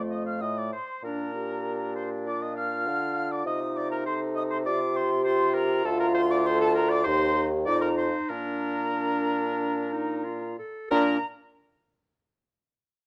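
A hollow, tongued concert flute with vibrato carries the spirited, cheerful melody high above a vibrato-tinged oboe second line, a bright clarinet and a soft-attacked, distant French horn in accompaniment, and an up-front bassoon bass in this quick classical-period wind quintet movement in Bb major, played with rubato at 91-102 BPM under light reverb and a dark production, cut from a longer piece as the harmony moves through F7/C and Dm7 before resolving to Bb at 8.3 seconds.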